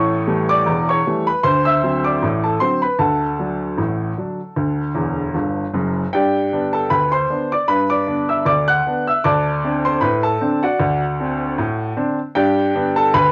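A home cassette recording in a moderate studio-like room gives this short cut from a longer piece its homespun character, with the solo baby grand sitting up front and carrying a touch of tape coloring. The lively, jaunty ragtime piece rolls along in a swung two-beat feel, the piano's clear, open tone ringing with long sustain across a span from deep bass to bright treble. A piano fill from 5.0 to 6.1 seconds leads into a fresh passage that settles home by the close.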